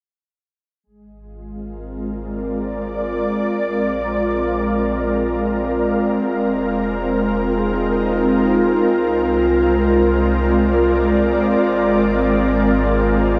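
A slow, unhurried three-beat pulse with a straight feel drifts beneath this luminous, weightless ambient passage, cut from a longer piece. A deep, round sine sub bass fades in from 0.9 s, and at 1.5 s an ethereal, up-front pad of detuned sawtooth and triangle tones in unison arrives with a slow attack, its sustained chords softened by ensemble chorus and a glittering shimmer reverb. Between 4.5 s and 10.2 s a very quiet celesta traces delicate, bell-like arpeggios, its felt-hammered tone sweet and ringing. The harmony moves gently from Ab through Bb9, Fm7 and Bb9/C before settling back on Ab. The whole piece sits in a vast, echoing space whose cathedral reverb lets each sound hang and dissolve slowly.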